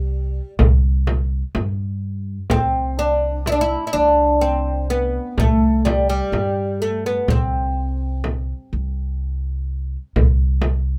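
Set in a straight 10/8 at 126 BPM counted in eighths, this short cut from a longer Turkish makam ensemble piece moves with a festive yet stately bearing in C makam rast. The fretless oud carries the melody between G3 and E4, its plectrum-plucked double strings sounding bright and woody. Beneath it, the upright bass holds the low end from C2 to G2 with a dark, growly, thumpy pizzicato tone from its steel strings. The frame drum enters at 0.6 seconds with a large, deep sound struck by soft hands, given a compressed and saturated edge. All three parts sit up front in a dry space with little reverb. The oud stops at 8.2 seconds, leaving the bass and drum to carry on until the drum drops out at 10.8 seconds.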